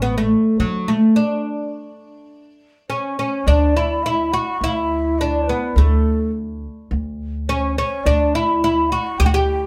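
Warm and festive, this short Turkish instrumental, cut from a longer piece, moves in a straight four-four feel. A bright, woody oud carries the melody up front, its plectrum-plucked double strings ringing from a fretless neck. Beside it, a dark pizzicato upright bass with steel strings holds the low end, also close and present. At 2.9 seconds a breathy end-blown ney of reed cane slips in as a second line, higher and further back, its tongued notes shaded with vibrato. A stop from 1.2 to 3.5 seconds marks the close of the opening passage before a new section takes over. The band plays live together in one room, wrapped in a moderate studio reverb that keeps the sound intimate.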